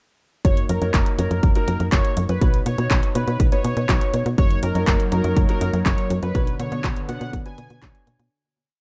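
From 0.4 seconds, a romantic, danceable italo disco verse in F# major at 122 BPM opens with a punchy, overdriven four-on-the-floor electronic kick up front, an overdriven house drum kit of closed hi-hat and handclaps, a tight, octave-jumping sawtooth sequencer bass, clear dotted-rhythm baby grand piano stabs set in the background under a low-pass filter, and a thick, bright, detuned unison lead repeating a riff melody through lush chorus and digital delay, while a smooth analog pad with chorus adds sustained chords from 4.4 seconds before the dark, dry production fades out from 5.7 seconds.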